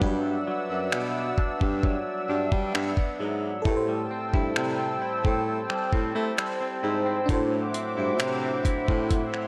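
A straight, unhurried 4/4 groove from a gritty, compressed sampler-style drum kit, with thumpy kick, hi-hat and finger snaps up front, sets a late-night, moody contemporary R&B feel in this short cut from a longer piece. A breathy baritone saxophone carries the low line in a mellow jazz style, with subtone, scooped notes and light vibrato, until 9.3 s. Over it, a glassy, bell-like FM electric piano, twangy clean guitar arpeggios with lush chorus and tape echo, and a detuned sawtooth pad with sidechain pumping drift through Em9, Am7 and D9, all steeped in a dreamy hall reverb with lossy artefacts.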